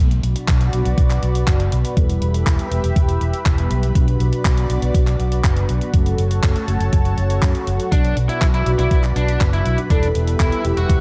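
This melodramatic, bittersweet italo disco fragment in B minor opens at 0.0 seconds with round, brassy synth stabs, treated with chorus, phaser, digital delay and vibrato, over a bright, punchy fingered electric bass with an envelope filter that sits up front. A lush, thick unison pad soon joins with slow-attack sustained chords in the upper register, shimmering with its own chorus and phaser. The groove is straight at 121 BPM in 4/4. A thumpy, overdriven electronic kick lands at 0.5 seconds, driving the beat alongside handclaps and hi-hat from a clean 12-bit drum machine with a tape-softened edge, both sounding re-recorded in a large room. A filter sweep runs through the whole passage as the chords move through Bm, Em and F#m. At 7.9 seconds a biting, overdriven lead guitar enters with a picked melody coloured by digital delay, all within a dark, warm mix with light reverb and digital ambience.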